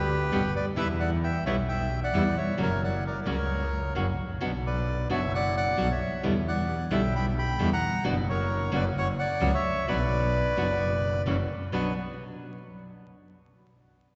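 A bandoneon and a bowed double bass open this melancholic, tense tango excerpt together, with a nylon-string guitar joining at 0.3 seconds. The bandoneon carries the melody with a reedy, boxy tone and sits up front. The bass is also up front, played by a single bowed player whose tone is bright, biting and intense, with vibrato. The fingerpicked guitar supplies dark, full-bodied classical accompaniment. The music moves at 132 BPM in 4/4, but with a loose rubato feel, in B harmonic minor. The harmony travels from G and Em through F# to Bm, with an F#7 turning back to Bm at 11.7 seconds as the music shifts into a new section. Everything is bathed in a long, wet church reverb, with vinyl crackle and a muted top end.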